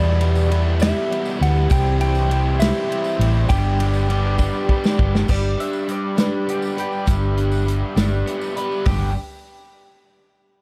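A round, punchy hollow-body bass sits up front in this hopeful folk rock and heartland rock excerpt, moving at an unhurried 67 BPM in a straight 6/8 in G major over Em, C and G chords. Above it, a slightly broken-up, compressed electric slide guitar carries the melody through analog delay until 4.6 seconds, while a boxy, shimmering twelve-string acoustic guitar picks an octave-doubled accompaniment and a bright, double-tracked overdriven electric guitar plays a riff. A reedy, very quiet musette accordion softly holds airy sustained chords. A natural country drum kit with a punchy kick and medium-tuned snare drives the groove with crash, hi-hat, ride and toms, joined by a jingly tambourine, and a drum fill arrives at 4.4 seconds. At 5.3 seconds a bowl-back mandolin enters with a picked second line on its double strings. The dark, warm production keeps reverb to a minimum and gives the band a close sound.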